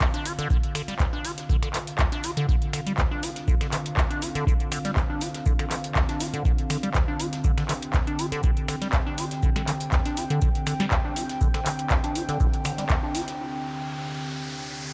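A dry, deep electronic kick sits up front at 121 BPM in a lightly swung 4/4, joined by a booming analog drum machine with a tonal snare, metallic hats, handclaps and finger snaps, while a very quiet soul drum kit with a fat snare and rolled-off top adds hi-hat and shaker underneath. This raw, trippy acid house fragment rides on a squelchy, resonant square-wave acid bass riff with filter sweeps, phaser, tube saturation and tape echo, over a moody, detuned sawtooth pad holding a Dm7 chord with chorus and sidechain pumping. The bass drops out at 13.2 s, an electronic riser builds from 12.3 s, and the drums give way to a break at 13.4 s, all captured in a gritty small-room hardware sound with transformer saturation.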